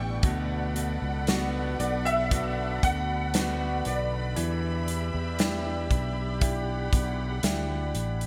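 A straight 4/4 pulse at 58 BPM from an airy, up-front country drum kit with gated reverb, a punchy kick and a medium-tuned snare, entering at 0.2 s, carries this hopeful, tender pop ballad fragment in D major, where a growly fretless bass with lush chorus, an open, deep-toned concert grand accompaniment and sustained soft-attack sul tasto string chords sit beneath a very quiet fingerpicked acoustic guitar and a background violin section with expressive portamento, while a smooth, vintage grand piano with ensemble chorus sings the melody from 1.8 to 4.8 s, all framed by bright 1980s-style digital production and light small-room reverb.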